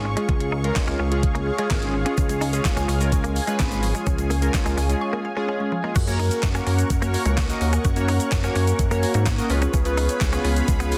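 A glossy, pulse-width-modulated synth bass pumps up front in this confident, bittersweet dance-pop piece at 127 BPM, joined by an overdriven, knocking pop drum kit with deep snare, handclaps, hi-hat, shaker and crash, a retro, mellow chorused polysynth with filter sweeps, a thick, detuned unison pad with chorus and phaser, and a twangy, clean electric guitar riff in the background, while a woody, mallet-like FM pluck plays very quiet arpeggios from 2.2 to 5.8 seconds and a grainy tube shaker enters at 2.2 seconds, all set in light reverb under a dense, heavily limited master as the chords move from Db to Gb and on to Db7.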